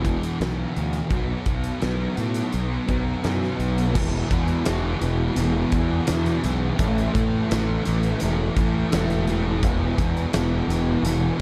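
This brooding, melancholic cut from a longer piece has a dark, warm production set in a small room ambience. It is shoegaze and dream pop rock at 84 BPM in a straight 4/4, tuned to A4 = 444 Hz. A thick, double-tracked fuzz guitar sits up front with distortion and ensemble chorus, picking a low riff over E5, B5 and A5 chords. Beside it, a fingered electric bass, overdriven and fuzzy, sounds direct and amped in the low register. A huge arena drum kit plays throughout in a big room, with a fat snare, punchy kick, and bright crash and hi-hat. The opening phrase repeats from 4.0 s, with A5 arriving at 6.8 s before the music returns to E5 at 9.6 s.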